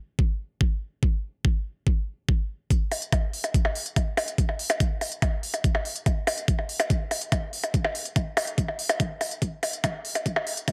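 An overdriven, knocking electronic kick drives this alien, psychedelic trance fragment at 143 BPM in a straight 4/4, sitting up front in a mix with light reverb. At 2.7 seconds, smooth, tape-warm electronic hi-hats and percussion blips, layered and captured in a small room, join through a high-pass filter as a build-up and filter sweep take hold. A drum fill arrives at 9.4 seconds before this piece, cut from a longer track, ends.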